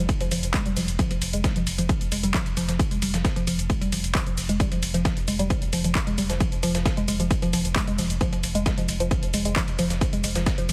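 A woody, wave-folded pluck sits up front with a dark, chorused riff between F3 and Ab3, pumping against the overdriven electronic kick in this driving, hypnotic peak-time techno cut in F minor at 133 BPM, tuned to A4 = 436 Hz. A thick, tube-saturated sub bass holds F1 beneath, while a very quiet electronic impact marks the opening second. From 0.1 seconds, an overdriven techno kit of handclaps, hi-hat and shaker is layered with a gritty, sampler-style soul kit of hi-hat, ride and a medium-tuned snare, all in a dry, heavily compressed, radio-like industrial mix.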